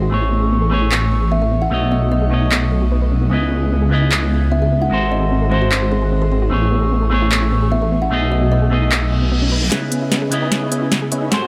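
A dreamy, bittersweet half-time future bass fragment opens with a bright, twangy envelope-filtered electric guitar, a soft, warbling round pluck tracing filter-swept arpeggios in the background, and a lush, detuned saw bass up front, joined at 0.9 s by an overdriven trap kit of sharp snare, crisp hats and handclaps and then by a woody, hollow kalimba melody trailing dub echo, all over extended chords, until a reverse cymbal and riser at 9.1 s usher in a build-up where a huge, airy compressed supersaw riff plays through a low-pass filter sweep over a drum fill.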